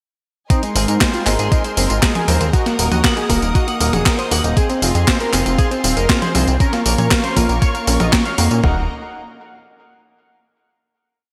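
Italo disco with a danceable, nostalgic mood, this short piece plays as one chorus over a four-on-the-floor thump before closing on a final chord at 8.6 s. Two overdriven, sampler-style drum machine parts sit up front. One carries the kick and floor tom, and the other carries a disco machine beat of snare, claps, open and closed hi-hats, tambourine and high tom, lit by gated reverb. From 0.8 s, a glossy, nasal synth bass gallops in sixteenth notes with saturated pulse and sawtooth tones under chorus. Above it, a thick, detuned unison lead with wave-folded, ring-modulated edges repeats a sixteenth-note riff over a pedal note, touched with subtle chorus and delay. In the background, a lush, bowed string section holds a smooth sustained pad, while a twangy, slightly broken-up guitar runs a 16-step arpeggio through analog chorus and delay. A brilliant, worn baby grand adds off-beat close-voiced stabs with delay, all within a bright 1980s-style digital production in a lush hall.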